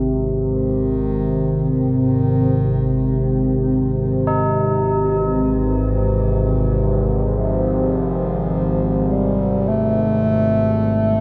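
Unsettling and cavernous, this dark ambient drone moves at a slow 53 BPM in 4/4, sitting on an Ab chord and tuned to A4 = 438 Hz, in a brief excerpt cut from a longer piece. An analog drone holds the low ground from the first moment, a sawtooth and pulse-wave tone with pulse-width modulation, sine and wave-folded colours, slow attack and long release, evolving and up front with chorus. From 0.5 seconds a dark bass clarinet carries the melody in a classical solo style, sounding distant and roomy through shimmer reverb and delay as it fades in across the whole passage. At 4.3 seconds tubular bells sound soft, mellow arpeggios on Eb4, struck with a padded hammer, their metallic, solemn ring lasting only until 5.3 seconds and drenched in shimmer reverb and delay. A huge ambient reverb with a long 8.7-second tail surrounds the parts, giving the short passage its sense of depth.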